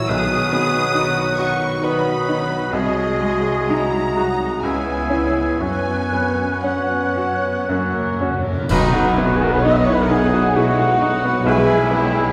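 A bright, brilliant baby grand piano carries the melody from the first moment, joined by a warm, lush violin section singing above it in a lyrical, passionate Romantic movement for piano and orchestra in B major, moving in a rubato 3/4 at roughly 57-70 BPM. Around them, a second violin line, a dark and distant clarinet, an airy flute ensemble and a soft-edged oboe weave secondary lines. A rich viola section and a vintage-toned bassoon fill the accompaniment, while mellow French horns hold sustained chords over a bowed double bass and cello foundation. Very quiet, round timpani on calf heads open the passage and return with a fill at 7.7 s, and dark cymbals with concert bass drum add color in the middle stretch. At 8.7 s the full band strikes an accent as clear trumpet stabs, a faint trombone section and a very quiet tuba enter, and the harmony lands on a Bdim7 near the close of this fragment cut from a longer piece. 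A reverberant recital hall lends the orchestra a spacious, churchlike glow.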